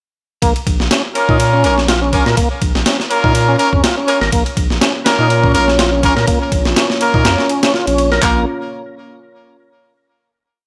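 A funky, energetic breakbeat piece at 123 BPM in B-flat minor, built on a gritty, tape-warm sampler-style drum loop with a thumpy kick, handclaps, ride and snare, a thick saturated sub bass playing a skipping syncopated line, and a lightly overdriven tonewheel organ repeating a 16-step riff through chorus vibrato, slow rotary speaker and delay, joined at 1.2 seconds by brilliant up-front horn stabs moved in parallel and at 4.3 seconds by a moody, dark sawtooth pad pumping under phaser and chorus before a final chord rings out at 8.2 seconds.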